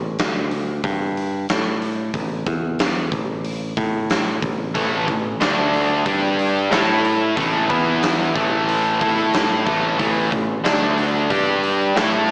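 A bright, growly picked electric bass opens this anthemic hard rock excerpt, joined almost at once by a huge arena drum kit with a punchy kick, medium-tuned snare and hi-hat sounding natural and up front in a big room. At 4.7 seconds a double-tracked, overdriven electric guitar enters up front with a riff and slapback echo as the power chords move through A5, D5, G5 and E5. A lush hall reverb gives the whole piece a powerful stadium scale, though with a small speaker character.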